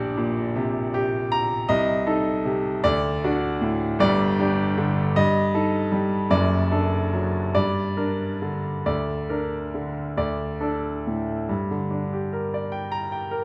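A rubato 6/8 lilt at 44-54 BPM in dotted quarters carries this stormy, bittersweet romantic character piece in G minor, tuned to A4 = 439 Hz and cut from a longer work, where a clear, smooth, vintage-toned grand piano plays solo and up front across F#1 to Bb5, moving from Gm/Bb through Adim/C, D and Eb/G before returning to Gm as a new section opens at 11.5 seconds, heard in a moderate recital hall reverb.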